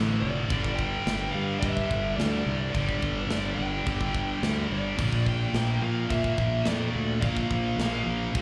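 Aggressive and heavy, this heavy metal excerpt is heard as a live gig through a club PA, with a pair of bright, scooped high-gain guitars picking a riff in the background over Dm, G5 and Bb chords. Up front, a growly fingered bass with fuzz and overdrive holds the low end, while a dark, distorted lead guitar enters at 0.2 s with a high melody colored by slapback and tape echo. A metal drum kit with a medium-tuned snare, a tight kick, a rolled-off top, and china and crash cymbals joins at 0.5 s.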